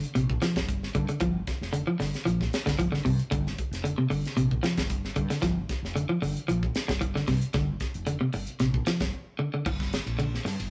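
Afrobeat with a hypnotic, funky pull, this short cut from a longer piece sets a slightly broken-up electric guitar playing picked arpeggios up front over a tight funk drum kit with a high-tuned snare, while a dark, growly fretless bass with a woody, round tone enters at 0.2 seconds, all in a rough rehearsal-room sound with light reverb and a brief break at 9.1 seconds before the chord shifts from Gm7 to Gm.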